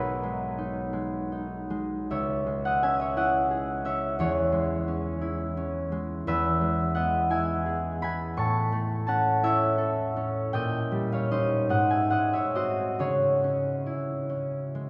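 Classical solo harp in a wistful, mysterious mood, this excerpt from a longer piece features a ringing, fingerpicked concert harp, up front and spanning B1 to C#6, that moves freely in a rubato 6/8 through minor-key harmony before settling on C#m at 13.0 seconds, all bathed in a long, wet cathedral reverb heard from further back in the room.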